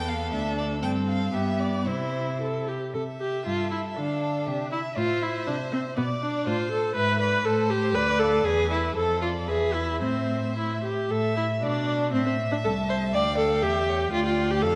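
From 0.0 s, a string quartet plays together in a quick, spirited and graceful classical-period movement at 119 BPM in 2/4, shaped with a supple rubato. It opens in C major before turning to A minor at 7.0 s, and fresh material arrives at 11.1 s as this cut from a longer piece draws on. The first violin carries the melody with a clear, distant tone, while the second violin weaves a rich, smooth second line alongside it. The viola sits up front with a focused accompaniment, and the cello anchors the bass with an even, close sound; all four are single bowed players using vibrato. A dark production and a wet scoring-stage reverb with a 1.8 s decay lend the ensemble a spacious glow.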